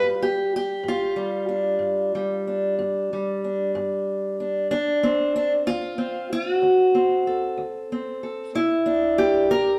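Heard live in a wet, reverberant stone room, this laid-back, swaggering acoustic country blues in 12/8 features a solo fingerpicked steel-string acoustic guitar with a boxy, parlour character, sitting up front as it moves from G7 to D7 at 4.7 seconds and on to C7 at 8.6 seconds.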